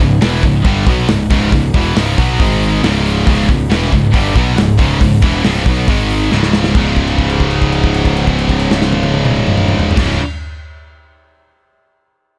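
Three bright, high-gain electric guitars, one double-tracked and one scooped, open this dark, epic heavy metal excerpt at 138 BPM in C# minor, moving through C#m and G#5 over an overdriven fuzz bass that sits round and punchy up front. A tight-kicked acoustic kit in a small room joins almost at once with crash, hi-hat, snare and toms, and a drum fill at 6.3 seconds leads to a C#5 chord and a held note lasting until 10.0 seconds. The production is dry, dark and warm, with the drums and bass forward and the double-tracked and scooped guitars set behind them.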